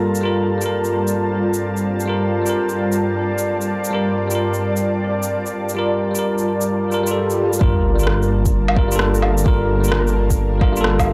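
Melancholic and ghostly, this future garage excerpt moves at 130 BPM in G minor with a swung feel, opening on a Gm7 as a bell-like tine electric piano with analog delay and an ethereal, airy pad with ensemble chorus both pump against the sidechain, while a glassy harmonics texture drifts in the background and an overdriven electronic shaker, rim click and woodblock pattern enters at 0.1 seconds. A distant swell rises at 7.0 seconds into a sub drop, and at 7.6 seconds the glass texture stops as a deep, overdriven kick and a dark, rumbling detuned saw bass with tube saturation arrive. The mix is dry and gritty, with transformer saturation and light digital ambience.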